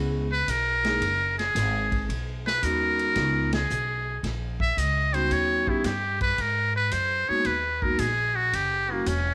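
A short excerpt of small-group jazz in the swing and bop vein opens with vibraphone and upright bass together, setting a sophisticated, warm mood at 112 BPM in 4/4 with a 68% swing on the eighth notes in F# major. The vibraphone, struck with medium hard mallets and its motor off, gives ringing, metallic chords in a boxy small room, while the pizzicato bass sounds woody and thumpy, sitting up front on steel strings. The trumpet with a metal mute enters at 0.3 seconds and carries the melody as a featured solo, its tone buzzy, thin and brilliant, with a soft attack and light vibrato, and it stands as the loudest voice. A vintage drum kit joins at 0.5 seconds on hi-hat, ride, snare and kick, with a medium-tuned snare, punchy kick and rolled-off top in a natural small-room sound, kept low beneath the others. The harmony moves through rich colours such as C#m7, B69, D#7alt and G#m9 before landing on F#7b9, with a band accent at 3.4 seconds. 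Light reverb and studio ambience frame the home cassette recording, and the tape character colours the vibraphone, trumpet and drums.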